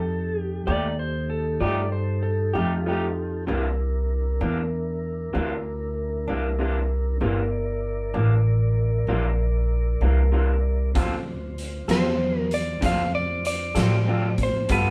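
A woody, pizzicato upright bass sits up front and anchors this soulful, laid-back slow blues in 12/8 at 64 BPM, drawn from a longer piece in C mixolydian. A soft, flute-like tonewheel organ holds sustained chords throughout, shimmering through a slow rotary speaker. Beneath it, a picked electric guitar played through a small old amp adds lo-fi, slightly broken-up accompaniment with a harmonic tremolo. Between 0.7 and 3.5 seconds, a clean lap steel traces a second line with fingerpicked slide and volume swells, and a dark, picked lead guitar offers a brief phrase at the very start and returns near the close. A raw garage drum kit with a fat snare and punchy kick arrives at 11.0 seconds, gritty and saturated with a rolled-off top, just as the harmony, having moved from F9 to C9, settles on Dm7. The band plays live in a small room with moderate reverb and a faint mains hum.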